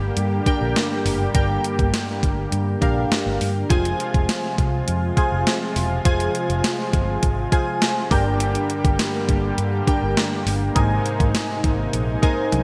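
An overdriven, up-front 12-bit drum machine with a thumpy kick and gated reverb drives this glossy, romantic 1980s-style pop passage from 0.2 seconds, over round, foam-muted fingered electric bass, detuned sawtooth-and-pulse analog keys with ring modulation, phaser and filter sweeps, and a bold, warbling brassy pad of sustained chords, all set in a lush hall and a bright digital production.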